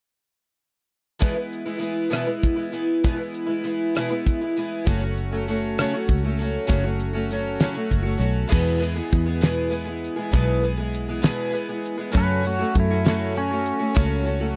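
Folk rock with a heartland rock lean, this hopeful, jangly cut-down in E major moves at 66 BPM in a straight 6/8, with a shimmering, octave-doubled picked twelve-string acoustic guitar and a damped 70s drum kit with a fat snare and tight kick sitting up front from 1.2 seconds, a round, foam-muted fingered electric bass joining at 4.9 seconds, and a clean pedal steel guitar adding a second line of fingerpicked slide and volume swells at 12.2 seconds, all in a dry, close 1970s-style studio sound.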